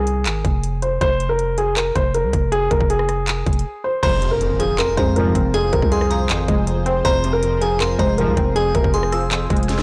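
Hip hop in a trap style, this brooding, melancholic excerpt moves with a half-time feel. A dark, intimate baby grand piano carries the melody up front, its short, mellow notes softened by a low-pass filter and tape echo, with the faint action noise of the instrument audible. A growling, buzzy 808-style bass and an electronic trap kit with a hard-clipped kick, sharp snare, metallic hats, handclaps, rim clicks and a crash sit alongside it from the opening break. At 4.0 seconds a very quiet impact marks the second section, where a crystalline wavetable pluck with chorus and filter sweep, a smooth analog pad drifting in the background, and a bright, full-bodied FM bell with tremolo and tape echo all join. Bold, fat analog synth brass stabs punch in briefly at 5.2 and 8.2 seconds. The whole mix has a blown-out, overdriven character with only light reverb.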